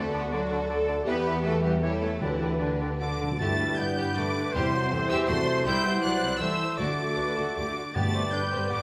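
This short passage from a dramatic, fast romantic movement for symphony orchestra in triple time opens with most of the orchestra already sounding, its rubato feel lending a spirited yet graceful sweep. A clear, intense violin section carries the melody high above the orchestra, while a second, smoother violin section, a clear oboe, a dark and very quiet clarinet, and an airy, crisp-edged flute ensemble weave supporting lines beneath it. A focused viola section and a warm bassoon fill out the accompaniment in the background, mellow French horns hold sustained chords, and a lush cello section and a smooth double bass section anchor the bass. Timpani struck with hard mallets enter at 2.2 seconds and add an articulate fill just before the second section begins at 3.4 seconds, where a mellow, punchy trumpet joins with stabs. The harmony moves through D, E minor, A7 and G over D back to D, then travels from G through C, A minor and D home to G, all set in a wet scoring-stage reverb that places the violins and double basses at a distance.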